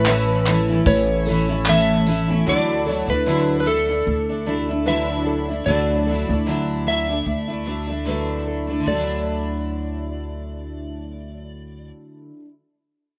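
Easy-going and heartfelt, this acoustic pop piece in D major at 75 BPM with lightly swung sixteenths opens with a slightly broken-up electric slide guitar melody carrying slapback echo over a bright, double-tracked steel-string acoustic guitar, fingerpicked nylon-string arpeggios in the background and woody pizzicato upright bass, while a polished drum kit with a punchy kick, handclaps and tambourine, joined by a distant, jingly tambourine, drops out by 2.3 seconds, just before the harmony moves from A to Dadd9 at 2.5 seconds in a dry outdoor sound.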